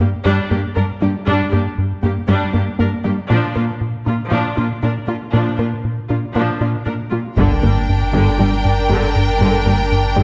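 A tense, futuristic hybrid orchestral and electronic film score cue in G minor at 118 BPM, where an up-front, clear viola section, a rubbery, nasal square bass riff, a background cello section and a bright analog pluck arpeggio with chorus and delay move from Gm to Bb until 7.4 seconds, when a lush violin line, a very quiet double bass section, a deep sine sub bass and a brief, distant taiko ensemble join on a return to Gm, all set in a moderate scoring-stage reverb.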